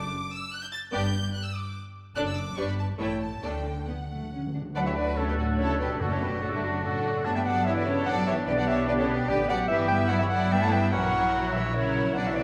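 A rich, expressive violin section carries the melody of this quick, urgent classical-period orchestral movement in D major and triple time, its rubato lending a restless edge at 145 BPM, while dark double basses with portamento and soft-attack cellos hold the bass and a focused second violin line and smooth, even violas join at 0.9 seconds. Timpani struck with hard mallets sound close and dry in a fill from 3.4 seconds, and at 4.8 seconds a pure, distant flute group, a solo clarinet and a smooth-topped oboe add second lines over mellow, roomy French horn chords kept in the background. The strings sing with vibrato throughout, and a wet scoring-stage reverb gives this short cut a spacious sheen.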